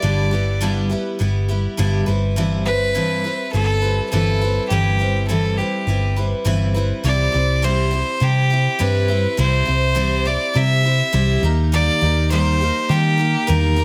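Folk rock with a heartland rock lean, this hopeful, jangly excerpt moves at 103 BPM in a straight 4/4, with a clear, airy-bowed fiddle carrying the melody under plate reverb, its tone intense and boxy with light vibrato. Beneath it, a shimmering, octave-doubled twelve-string acoustic guitar picks out the accompaniment while a round, dark hollow-body electric bass sits up front, all three playing throughout in a light room reverb. The harmony drifts from G6 and Cmaj7/G into C at 7.0 seconds, then moves to Eb at 11.4 seconds before the cut.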